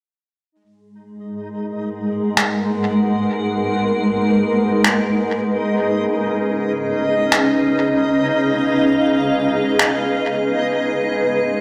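A wet echo-chamber haze of digital ambience wraps this hazy, meditative ambient dub fragment, where a reversed, dreamy backwards swelling texture surfaces at 0.5 s, a cloudy, detuned granular cloud pad with vintage 12-bit sampler grit holds sustained chords from 1.3 s as the harmony drifts from G#m7 to C#7, and muffled, pitched-down electronic finger snaps soaked in dub echo sit up front from 2.4 s.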